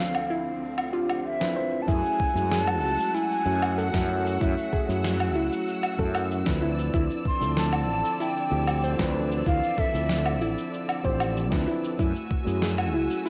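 Relaxed and wistful, this sunset chillout excerpt drifts along in a straight 4/4, alternating between Dm9 and F#m9 chords under a moderate spring reverb and the hazy grain of a home cassette recording. A breathy, mellow silver concert flute carries the melody with a close-miked, slightly unsteady straight tone touched by tape echo, until it falls away at 10.4 seconds. Beneath it, a clean tine electric piano played through its built-in speakers and a bright, intense bowed string section with vibrato hold the harmony. A soft, round pluck with a dark, chorused edge and analog delay spins arpeggios. Gritty, compressed sampler-style woodblock, fat snare and shaker set the groove from the start, and at 1.9 seconds a thumpy electronic kick and a growly, up-front fretless electric bass join in.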